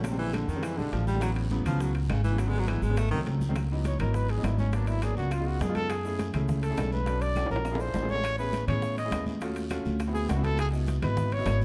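Driving and sophisticated, this Afro-Cuban jazz excerpt opens with a breathy, close-miked baritone saxophone solo that stops at 3.2 seconds, before a mellow trumpet with light vibrato takes the lead, up front, from 3.9 seconds. Underneath, a clear baby grand piano accompanies and a woody pizzicato upright bass sits prominently, while congas, raspy guiro, grainy distant maracas and ringing metal-shell timbales stay in the background, with tight bongos and dry claves very quiet. A drum fill arrives at 7.4 seconds, and the dark production carries a moderate large-studio reverb.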